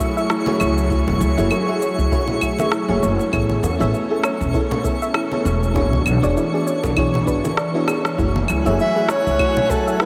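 A dreamy, reverb-soaked mix opens this relaxed, wistful sunset chillout excerpt in F# minor at 99 BPM, with a lightly swung 16th feel. A mellow FM electric piano and an airy, breathy pad hold the chords from F#m9 through Amaj9 and E13, while a twinkling granular texture sparkles above and a soft round pluck with a cassette-tape tint traces arpeggios from 0.2 seconds. Underneath, a woody, thumpy pizzicato upright bass sits up front alongside a deep, tape-warm electronic kick, layered shaker, rim click and claves, and distant bongos and congas, with a drum fill at 7.9 seconds before a whispered, intimate soprano saxophone enters at 8.8 seconds with vibrato and scooped notes.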